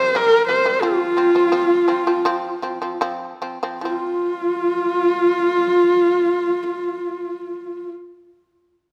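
In a straight 4/4 pulse between 72 and 91 BPM, this fragment of Mongolian folk music slows through its first 3.8 seconds before a second passage runs to 7.2 seconds. A single bowed horsehead fiddle carries the melody up front, its husky horsehair tone shaded with vibrato, soft attacks and expressive portamento. Alongside it, a softer low bamboo xiao plays a second line in the same register, end-blown and airy, with tongued notes and its own vibrato. A fretless shamisen adds quieter arpeggios in a lower register, its plectrum-plucked strings percussive and buzzing. The harmony moves from C5 to F5 within the opening second. Close, detailed microphones place the trio in a moderate scoring-stage reverb that gives the windswept, vast mood its sense of space.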